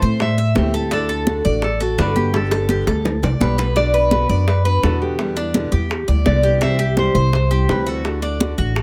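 A woody, thumpy upright bass sits up front in this relaxed Cuban son and guajira excerpt at 168 BPM, its gut strings played pizzicato beneath metallic, double-string arpeggios from the tres and a bright, full-bodied fingerpicked steel-string guitar. A classical nylon-string guitar carries the warm melody from 0.2 seconds, while tight, high-tuned bongos and thick-skinned congas in the background add percussion, with a drum fill from 2.3 seconds before the chords move from Am, D and Gadd9 to Bm, Em7, C and D at 3.8 seconds. The close, detailed sound carries little reverb.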